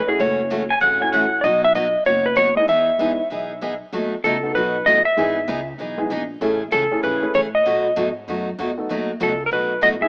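A clean, up-front electric lap steel guitar carries the melody in this playful, down-home western swing excerpt, its fingered slide lines sitting between G#4 and E5 for the full ten seconds. The tune moves at a brisk 193 BPM in 4/4 with a swung eighth-note feel, and the chords pass through F#m7, B, Emaj7, B7 and Amaj7. Underneath, a dark, woody pizzicato upright bass with steel strings holds the low end, while a slightly detuned upright piano with long sustain and a bright, full-bodied jumbo acoustic guitar, picked, fill out the accompaniment. A compressed pedal steel guitar played with fingerpicks adds a brief, warm second line high up around F#5 to G#5, from 0.7 to 1.4 seconds. The whole track carries an AM radio character with a touch of light reverb.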